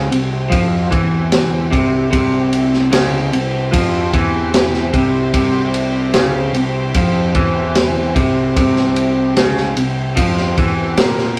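A slow, straight 4/4 groove at 74 BPM opens this hypnotic, dark slice of psychedelic rock in C major, cut from a longer piece and resting on a single C chord throughout its 11.4 seconds. A crunchy breakbeat drum kit comes in at 0.1 seconds, sitting up front with a tight kick, a high-tuned snare and dark ride cymbal, its gritty, saturated tone rolled off at the top. An electric guitar through a small old amp plays a riff in its low register, slightly broken-up and lo-fi, with a phaser colouring its picked notes. Beneath it, a fuzz picked electric bass carries the low end with an overdriven growl. Far behind, a studio string section holds soft-attacked, sul tasto chords that float above the band with a pure, bowed sheen. The whole take has the rough feel of a rehearsal-room recording, wrapped in a moderate stone-room reverb and a saturated glow.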